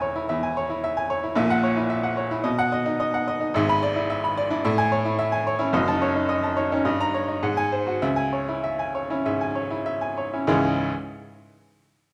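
Stormy and agitated, this short cut from a longer classical virtuoso piano study in C# minor moves at a rubato 96-112 BPM in 4/4, with a bright, brilliant baby grand piano playing alone up front from 0.0 to 10.9 s across a span from E1 to B5, its short-sustained notes set in a wet recital hall reverb within a dark production, tuned to A4 = 435 Hz, as the harmony runs from C#m/E through Amaj7 and G#7 before settling on C#m at 8.0 s.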